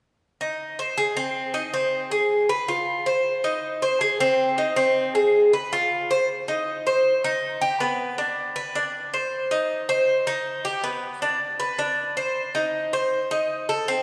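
This Latin recording is a short, danceable and sultry cut from a longer piece, moving at 158 BPM in a straight 4/4 and set in C harmonic minor, tuned slightly sharp to A4 = 441 Hz. A lone Cuban tres carries everything as the solo voice, entering at 0.4 s and playing through to 14.0 s, its picked phrases ranging from B3 up to C5. The acoustic instrument sits up front with a bright, metallic bite, and its doubled strings, some paired an octave apart, give each note a shimmering thickness. The playing falls into two sections, with the second beginning at 6.3 s. A church or concert hall surrounds the tres with a heavy, wet reverb that lingers for nearly three seconds, letting the strings ring out into a spacious, resonant room.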